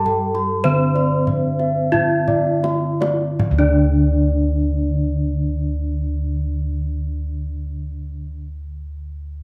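Serene and ceremonial, this brief cut from a longer Javanese gamelan piece in D slendro moves at a stately 38-52 BPM in 4/4, slowing over the first 3.4 seconds as the deep kendang, struck with soft hands, plays a fill from 1.9 s and falls silent at 4.1 s, while an up-front, horn-mallet bronze metallophone carries the shimmering melody over a mellow padded-mallet metallophone accompaniment, high arpeggios on round, airy bossed gongs and on a full metallophone touched with slapback echo, and a dark, smooth bass line on bossed gongs, all set in a moderate spring reverb.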